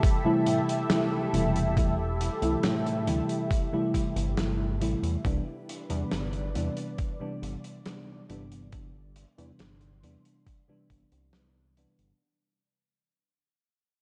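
Vaporwave with a faded, dreamy mood, where a warbling FM electric piano and a thick, phased unison pad drift over an overdriven, thumpy electronic kick, a dark big-room drum kit with 12-bit sampler grit, and a glossy pulse-wave synth bass, moving from Am7 to Cmaj9 in a lush hall as the whole excerpt fades out.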